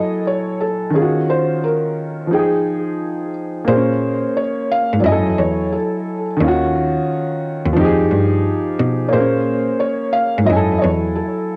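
Reflective and nostalgic, this lo-fi hip hop excerpt sways at 88 BPM with a swung sixteenth-note feel in Bb minor, cycling through minor-ninth chords. A felt-muted upright piano carries the melody with a dark, intimate tone, short sustain and audible action noise, softened by cassette tape, a low-pass filter, plate reverb and tape echo, while a woody upright piano plays the accompaniment up front through the same cassette haze and plate reverb. At 3.7 s a single bowed cello enters on the bass line, biting and intense with vibrato, and it stops at 11.2 s, all within a small room on a homemade cassette recording.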